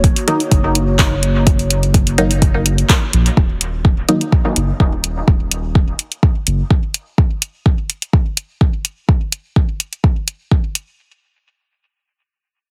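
Dub techno at 126 BPM in Eb minor, this short, nocturnal and hazy excerpt cut from a longer piece rides a straight 4/4 pulse. A dark, moody analog pad holds sustained Ebm chords with a slow attack and long release, its detuned tone thickened by chorus and phaser and breathing with sidechain pumping until 3.3 seconds. Beneath it a soft, round sub bass sits up front with the same pumping, while a muted, nasal chord stab enters at 0.3 seconds, its detuned sawtooth plucks shaded by a moving notch, phaser and dub echo. The up-front electronic kick is the loudest element and carries the groove to 10.6 seconds, joined by a layered deep house kit of handclaps and hi-hat trailed by dub echo, both re-recorded in a small room. Once the harmony drops out at 3.4 seconds, the stab trails off by 4.2 seconds while the drums and bass press on in a dry, heavily compressed, radio-like sound.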